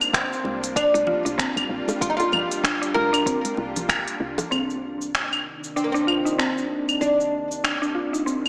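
Organic downtempo in C minor at 96 BPM, this earthy fragment of a longer piece moves in 4/4 with a light sixteenth-note swing. A bright, plectrum-plucked oud with doubled strings carries the melody, roughened by vintage 12-bit sampler grit and tape echo, while a mellow, round FM mallet pluck spins arpeggios through chorus and its own tape echo. Beneath them a tense, string-like sawtooth drone holds sustained chords with vibrato and built-in reverb, pumping against the sidechain, and a soft, dark, woody FM bass sits low. Up front, a crisp, tape-warm afro-pop kit of hi-hat, cabasa, claves and finger snaps drives the groove. It is joined by a deep electronic kick that drops out at 4.0 seconds, and by close, dry congas and bongos in the background that stop at 4.5 seconds. At that point the harmony moves from Gm7 to Cm9 and filter sweeps run across both the pluck and the drone, the whole mix set in a lush hall reverb that lends a big arena scale alongside a small-speaker character.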